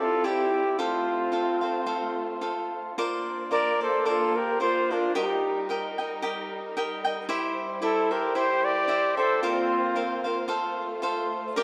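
A dark, smooth-topped trumpet sings the proud, romantic melody up front in this swung mariachi excerpt, alongside a distant, roomy second trumpet with light vibrato and analog delay, a crisp picked cavaquinho, and a veiled con sordino violin section holding lush chords, until both trumpets fall silent at 10.5 seconds in a dreamy mix soaked in plate reverb.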